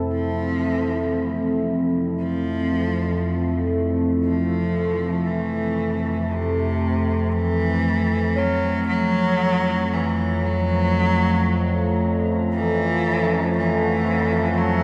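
A slow, straight 4/4 pulse at 58 BPM anchors this cavernous, dark ambient drone excerpt in F double harmonic, moving from F to Gb over F at 8.4 seconds. An up-front analog drone, evolving, warbling and detuned with chorus, sits beneath a deep, moody pad of sustained chords that fades out across the clip, while a bronze singing bowl rings with slow metallic beating in the background and fades in. From 0.1 seconds a biting, focused cello carries the low melody with vibrato, up front and fading in through a diffuse ambient delay, all bathed in a wet cathedral reverb.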